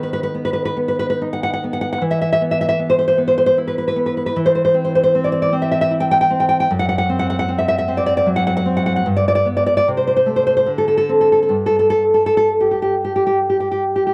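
A dark, warm production places a solo nylon-string guitar up front, bathed in a moderate plate reverb with a long tail of about 3.0 seconds. This is a tender, romantic piece for classical guitar in 3/4, moving with a rubato feel somewhere between 64 and 79 BPM. The fingerpicked playing has the freshness of new strings within a warm tone, and it ranges from a low F#2 up to G5. The harmony drifts from B over D# through an E power chord, C over E and a rootless D7 over F#, then settles on G before Am over C and Amadd11 over D. The 14.1-second fragment, cut from a longer work, reaches a chordless passage at 11.6 seconds, and the guitar plays alone throughout.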